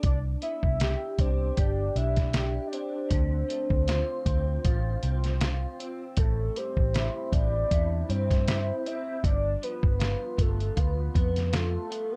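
A slow 78 BPM groove in 4/4, with a light swing on the sixteenths, carries this hazy, sunny stretch of bedroom-flavored indie pop in C major, moving through Cmaj9, Dm7, Am7 and G7. Up front sit a muffled, pitched-down sampler-style drum kit with a thumpy kick and fat snare, and a round, punchy foam-muted picked bass. Beneath them, a slightly broken-up electric guitar through a small old amp wavers in pitch under an ensemble chorus, while a nostalgic, detuned lead with a sub octave and vibrato sings from A4 to E5 with subtle chorus and slapback echo, all in light reverb and a dark, warm production.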